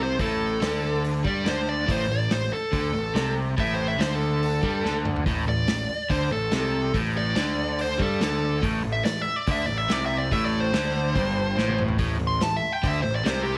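Blues rock in the power trio mould with a southern rock edge, this brooding, heavy excerpt drives along at 142 BPM in A minor, with a dark, smooth overdriven lead guitar soloing up front between G4 and C6 over a crunchy, double-tracked rhythm guitar riff. A growly, fuzz-laden picked bass holds down the low end while a vintage acoustic drum kit with a punchy kick, medium-tuned snare and rolled-off top pumps in its small room, dropping in fills at 4.8 and 11.6 seconds. Light reverb and a small-room ambience frame the trio, and the clip is cut from a longer piece.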